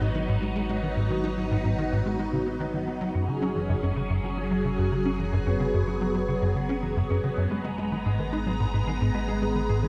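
Soaked in a cathedral-like reverb, this dreamy fragment of hypnotic, expansive sequencer-driven space music opens with a swirling, vintage string machine up front, its sustained chords colored by ensemble chorus and phaser. Beneath it, a punchy sawtooth sequencer bass drives a plucked riff through chorus and delay, while a deep, round sine sub bass holds the low end. At 3.1 seconds, as the harmony moves from G#m7 to F#sus2, a clean, twangy electric guitar fades in far in the background with delayed arpeggios.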